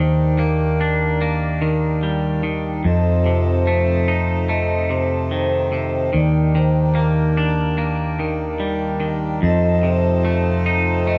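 Brooding yet cathartic, this slow post-rock passage moves at 73 BPM in a straight 4/4, cut from a longer piece and lasting about 11.2 seconds. A twangy electric guitar sits up front with bright, clean, compressed picked arpeggios, while a vibraphone played with medium mallets, motor off, adds metallic, ringing arpeggios higher up with a boxy small-room character. Alongside them, a pedal harmonium holds reedy, breathing, mellow sustained chords. The picked electric bass is the loudest part, amped, growly and punchy, anchoring the low end up front. The harmony sways between Ebmaj7 and F7, and all four players perform together in one room, bathed in a wet studio reverb.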